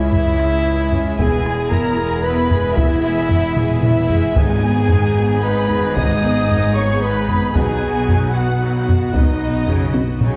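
Epic orchestral film score in 3/4 at 113 BPM, this short cut from a longer piece feels relentless and dramatic, moving through C#m, E, G#m and B. Heavy-stick taiko drums in a live room drive the music from 0.1 s and sit loudest in the mix, with drum fills at 3.6 s and 9.9 s. A very quiet, close and dry timpani with hard mallets on calf heads strikes briefly at 4.4 s. Two bowed violin sections carry the melody and a second line high in the background, one clear and distant, the other warm with a smooth top, both lush with vibrato. Intense violas add accompaniment, mellow French horns hold present sustained chords with a soft attack, and a tight woodwind section adds its own sustained chords. Clear cellos and a focused, lush double bass section anchor the bass, all set in a moderate scoring-stage reverb with a dark production.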